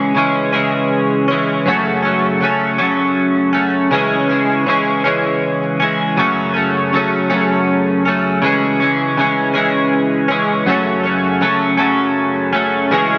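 A dreamy, reverb-soaked mix sits in a lush hall with a 2.7-second decay, its top end capped at 7.6 kHz so the sound stays soft and hazy. This trippy, mysterious rock fragment, cut from a longer piece, moves slowly at 53 BPM counted in dotted quarters, in a straight 6/8 feel and the key of F# minor. A lone twelve-string electric guitar carries the whole 13.2 seconds, picked clean and bright with a twangy, compressed edge, placed up front and ranging from F#2 to C#4. Flanger and analog delay color its tone, lending the part a swirling, otherworldly shimmer against the deep hall. The harmony simply rocks between C#m and F#m, moving to F#m at 1.7 seconds and returning to C#m at 3.9 seconds, a hypnotic two-chord cycle that holds through the end.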